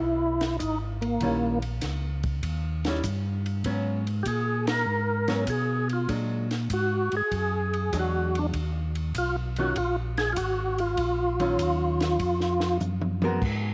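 Light reverb and studio ambience frame this soulful, bluesy soul jazz organ trio in Eb minor at 98 BPM with a swung 4/4 feel, where a fat, lightly overdriven tonewheel organ with key click and slow rotary speaker carries the melody up front, a round, mellow second tonewheel organ plays the bass, a dry cocktail drum kit with dark cymbals and a punchy kick keeps time, a clean, compressed hollow-body archtop guitar joins on accompaniment at 1.2 seconds, and the band hits an accent at 4.6 seconds before a drum fill at 12.8 seconds.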